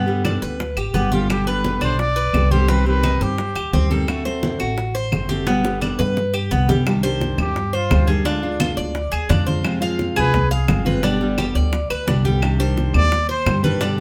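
Cuban son with a guajira lilt, this nostalgic excerpt moves at a brisk 172 BPM in C harmonic minor, built on a full-bodied fingerpicked steel-string acoustic guitar, the metallic double-string arpeggios of a Cuban tres and a dark, woody pizzicato upright bass. Thick-skinned, low-tuned congas sit distant in a large room, while round, close and dry bongos and live-room claves keep to the background. A whispered, mellow trumpet with vibrato and a soft attack enters intimately at 1.0 s, then takes brief solo phrases from 6.9 s after a drum fill at 5.5 s, all set in a moderate studio reverb.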